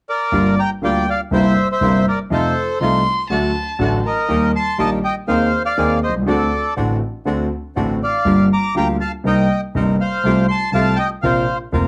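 The rhythm moves in a loose, rubato four, giving this sultry, passionate tango fragment a breathing, unhurried sway. A reedy, mid-forward bandoneon carries the melody up front, while a concert grand piano with a deep, natural bass supplies the accompaniment beneath it. A second bandoneon, brighter and quieter, adds stabs through the harmony, which passes through minor sevenths, dominant sevenths and added-ninth colours before settling on a suspended chord. Briefly, from 2.8 to 3.9 seconds, a single bowed violin enters with a second line, expressive with vibrato, portamento and a smooth top, trailed by tape echo. A moderate club reverb and a dark, warm production wrap the ensemble in an intimate, late-night atmosphere.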